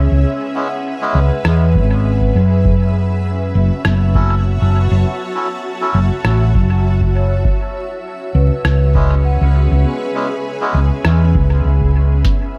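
Ambient dub at 100 BPM in 4/4, with a light 16th-note swing, this hazy, deep excerpt drifts over C#m7, moving to F#m7 at 2.6 seconds and back to C#m7 at 7.4 seconds. A granular cloud pad holds sustained chords from the start, its detuned, blurred texture bright and evolving inside its own built-in reverb, while a soft-mallet vibraphone plays mellow, ringing arpeggios in the background with a slow motor vibrato and dub echo. Up front, a hollow-body short-scale electric bass carries the low end with a round, dark, amped tone. A reedy, nasal melodica enters at 0.6 seconds with breathy stabs thrown into dub echo, and a muffled, compressed lo-fi sampler-style kit adds hi-hat and rim click from 1.4 seconds, also echoed. A dry, analog electronic kick joins at 1.8 seconds, and the whole track sits in light digital ambience with a layer of vinyl crackle.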